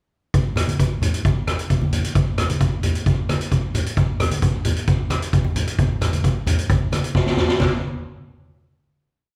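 A street-band drum kit leads this short, festive calypso piece, its boomy kick, medium-tuned snare, rim clicks, hi-hat and crash sitting up front with a rolled-off top as it carries a sunny calypso groove from 0.3 seconds. Low-tuned congas join at 0.6 seconds with a bright, thin-skinned, compressed and saturated tone, playing a loose pattern beside the kit. After a drum fill at 7.1 seconds the piece closes on a final hit, all of it heard from further back in a reverberant recital hall.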